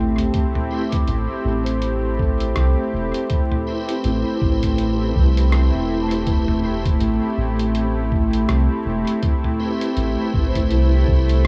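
Ambient dub excerpt at 81 BPM in A minor with a swung 16th feel and a hazy, meditative mood, where a detuned analog pad holds smooth sustained chords through chorus and tremolo, a metallic, band-limited vibraphone ringing with tape echo spins arpeggios in the background, a round, deep analog bass sits dark and up front, a muffled, pitched-down sampler kit of hi-hat, rim click and toms with dub echo enters at 0.2 seconds beside a thumpy compressed electronic kick at 0.3 seconds, and a piping, scooped tonewheel organ adds stabs through fast rotary speaker, chorus vibrato and dub echo from 0.7 seconds over an Am9 chord, all set in light digital reverb with vinyl crackle.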